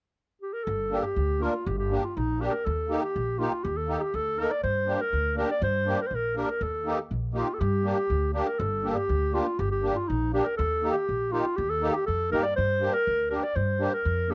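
Recorded at home on cassette in a small room with moderate reverb, this short klezmer cut from a longer piece has a homespun, intimate sound. In G minor at 121 BPM in a straight 2/4, it feels bittersweet yet festive, with Gm and Eb chords alternating beneath the tune. A mellow clarinet enters first at 0.4 seconds and carries the solo melody up front in a classical style, its tone colored by cassette tape. The upright bass joins at 0.7 seconds, played pizzicato on steel strings with a woody, growly, thumpy character. A close-miked musette accordion follows at 0.9 seconds, reedy and shimmering in its musette tuning, dry and full, with the same cassette tape coloring. The melody runs through one phrase and then begins it again, with all three instruments sitting up front.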